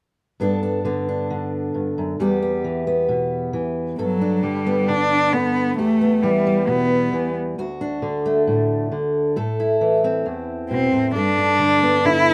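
A straight 4/4 pulse at 134 BPM carries this hopeful, anthemic folk excerpt, with a warm, up-front fingerpicked steel-string acoustic guitar playing accompaniment from 0.4 s through Gadd9, Em, D and Am chords. A single bowed cello, nasal and boxy yet focused, with vibrato, takes the melody at 4.0 s and returns at 10.7 s, sitting slightly above the guitar in level. The sound is dry and close, with the rough feel of a home demo mix.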